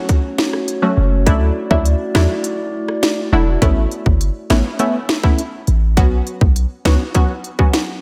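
A digital mix with light reverb and a sense of digital ambience opens this hypnotic, bouncy dancehall groove, cut from a longer piece. A glassy, ethereal glass harmonica holds sustained chords with a slow attack and gentle beating, set in a boxy small room and pumped by sidechain compression until it drops out at 3.6 seconds. The electronic drum kit sits up front with overdrive, built from a tight kick, sharp snare, smooth hi-hats and rim clicks. Punchy, detuned sawtooth chord stabs with a filter pluck and short decay warble through chorus and phaser, sounding bright and vintage. From 1.0 seconds a deep, boomy 808-style bass adds a sine tone with a noise layer and a mellow, decaying tail. The harmony moves from F#m to Dadd9, and after a break from 2.4 to 3.6 seconds it shifts to Aadd9 and then Bsus2.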